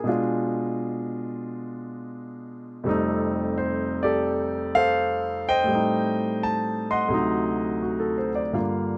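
A clear concert grand piano opens at 0.0 seconds and carries this nine-second solo jazz passage, cut from a longer piece, on its own. The mood is sophisticated and warm, set in F mixolydian at 85 BPM in 4/4, with a swung eighth-note feel loosened by rubato and tuning pitched at A4 = 439 Hz. The piano spans D2 to C6, and its polished tone pairs a deep bass with a long sustain, while audible action noise sits alongside an intimate, present sound placed up front. The harmony moves from Bdim7 to F13 at 2.9 seconds, then to Am7b5 at 5.7 seconds and D7b9 at 7.1 seconds. A light reverb gives the instrument a little room around it.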